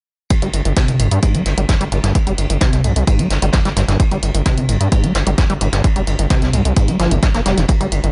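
At 0.3 s, a punchy analog kick, electronic hi-hats, a brushed vintage kit and a squelchy acid bass riff all arrive together, and a driven synth bass joins at 0.4 s in this short slice of driving peak-time techno at 130 BPM in a straight 4/4. The mood is industrial and hypnotic. The kick sits up front, and beside it the synth bass is aggressive and nasal, a saturated sawtooth voice with oscillator sync, a sine layer and a resonant, sustained tone spanning F1 to G2, pumping against the sidechain. The acid bass ranges from G1 to Bb3 with a resonant filter pluck and decaying, overdriven notes, pumping too and trailed by a digital delay. The acoustic brush kit adds a ride with dark cymbals and a medium-tuned snare from a small room, mid-forward and rolled-off on top, with high-pass filtering on the cymbals, snare and room and sidechain pumping on the cymbals, while the analog hats also pump. 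The mix is dry, with little reverb and a top end that stops below 10.9 kHz, and every part plays through to about 8 s.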